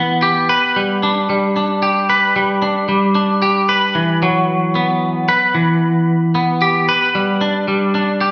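A bright, twangy electric guitar carries this brief melancholic rock fragment from 0.0 to 8.3 s. Its clean, picked, compressed tone sits up front with a touch of vibrato, moving through Em, G and Emadd9 in E minor. The piece has a brooding feel at 113 BPM in a straight 3/4, and it was captured live in one room, with a wet, large studio reverb giving the sound a spacious tail.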